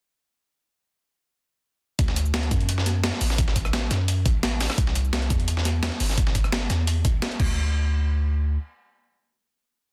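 Lush and dreamy, this liquid drum and bass piece in D mixolydian moves at 172 BPM in a straight 4/4. It opens into a drop at 2.0 seconds: a gritty, overdriven electronic kick thumps up front in a two-step pattern beneath a rolling two-step breakbeat kit of shaker, rim, snare, hats and crash, re-recorded in a small room. A dusty soul kit adds a fat snare and filtered hats in a looped breakbeat with edits, while a deep, mellow sine 808 bass carries long gliding notes from G1 to F#2 through a final hit at 7.6 seconds, all set in digital ambience under a dense, heavily limited modern master.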